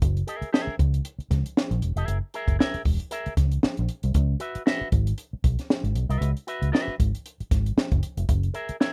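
A swung sixteenth-note funk groove at 116 BPM in 4/4 drives this short, hypnotic excerpt cut from a longer piece, set in C# dorian. A compact cocktail drum kit sits up front from the start, its high-tuned snare, tight kick and hi-hat carrying a dark, smooth tone with a rolled-off top and a small-room feel. Alongside it, a vintage muted fingered electric bass holds the low end between E1 and C#2, round and foam-muted with an amped character. At 0.3 seconds an electric guitar through an envelope filter joins as accompaniment, picked clean, bright, twangy and scooped in its upper-middle register, sitting lower in the mix than the rhythm section. The harmony moves from a rootless F#9 to a rootless C#m7 at 4.1 seconds and back to F#9 at 8.3 seconds. The sound is dry and close, with the rough, unpolished character of a home demo.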